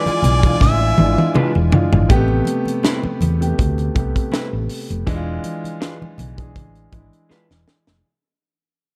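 A tight, swung funk kit at 81 BPM with a high-tuned snare, joined by very quiet damped congas and a round, punchy hollow-body bass, drives this cinematic, smooth 1970s-style soul fragment in A minor, where a clear harmonica sings briefly over bowed, vibrato-rich studio strings until 1.3 seconds, an up-front concert grand with deep bass carries the accompaniment, and a slightly broken-up, lo-fi electric guitar riff enters at 1.4 seconds just before a fade-out begins at 2.1 seconds, all set in light small-room reverb and a dark, warm production.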